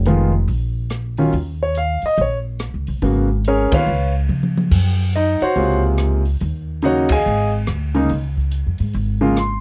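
Dark, lightly reverberant production with a faint mains hum frames this swinging, sophisticated jazz piano trio, cut from a longer piece in Db major at 142 BPM, where a clear concert grand with deep lows and long natural sustain carries the melody up front beside a woody, thumpy, warm pizzicato upright bass on steel strings, both set over an open studio drum kit with a boomy kick, ride, hi-hat, rim clicks, toms and crash, and the band hits accents at 3.7 and 7.0 seconds around a brief drum fill at 4.3 seconds.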